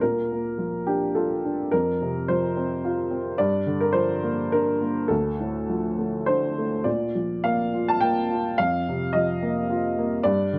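A warm, woody upright piano plays alone across this brief 10.6-second fragment of a longer neoclassical minimalist piece, its natural tone sitting up front in the mix. The mood is peaceful and tender, moving at 106 BPM in 3/4 with a rubato feel in Bb major, tuned to A4 = 441 Hz. The piano spans from D2 up to A5, drifting through a gentle cycle of Bb, Fsus4, Gm7 and Dm before returning to Bb and Fsus4. A light reverb surrounds the instrument, and nothing in the recording reaches above 7.6 kHz.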